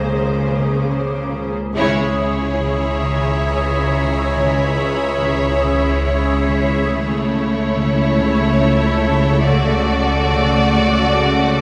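A wet hall reverb surrounds this mysterious, tense cinematic excerpt, a slow 70 BPM piece in 3/4 set in C# phrygian. A soft-attacked, expressive violin section carries the melody with vibrato, while a lush viola section accompanies and a clear, very quiet cello section holds a low C# beneath. An analog drone warbles mellowly on C#2 with chorus in the background, and a bright, morphing wavetable pad sustains chords through phaser and its own reverb. A thumb-plucked concert harp rings out a quiet riff, and a high, background violin texture floats above until 6.5 seconds. At 1.8 seconds the ensemble strikes an accent as a focused studio violin section enters with a second line and a distant double bass section joins the bass, with the harmony moving from C#m over a held C# to A and then D.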